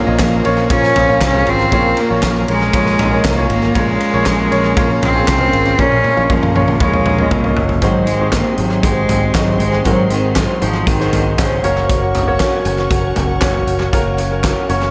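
A bowed cello sings the melody up front from the very start, rich and intense with vibrato, joined at once by a clear, polished concert grand piano, a distant, mellow French horn section carrying a second line, a fingerpicked jumbo acoustic guitar riff tucked in the background, and a very quiet, lush string section holding sustained chords high above. This bittersweet, dramatic piano-driven pop moves in a straight four, with a bright, direct picked electric bass and a loose indie drum kit arriving almost immediately, the kit up front with a punchy kick, a fat snare, dark cymbals, handclaps, hi-hat, ride and toms in a pumping room. A drum fill from 5.8 to 7.8 seconds carries the music into its second section, where the harmony shifts from Bb minor to Ab7 and then Gb. The cello falls silent at 11.7 seconds, leaving the horns, piano, guitar, strings, bass and drums to carry on. Tape echo trails the cello, horns, piano, guitar and drums, and a moderate spring reverb gives the whole mix an echo-heavy studio ambience in this fragment of a longer piece.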